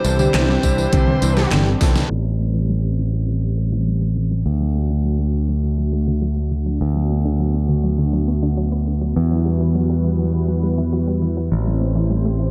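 Synthwave at 102 BPM, nostalgic and cinematic, opens with a brief overdriven lead guitar phrase carrying tape echo and 12-bit sampler grit, clangy electric grand piano stabs and a layered pop kit with deep snare, handclaps, tambourine and toms, plus a knocking electronic kick from 0.6 to 1.9 seconds, all driving through a drum fill into a band accent at 2.0 seconds. The drums and piano then drop out at 2.1 seconds, leaving the parts that have sounded from the start: a mellow, detuned analog pad, now under a long filter sweep, a very quiet ring-modulated unison pluck arpeggio, and a punchy, up-front picked bass pumping beneath chords moving from Am7 through D, Bm/D and Emadd9, all in a dark, low-pass-filtered mix with light reverb.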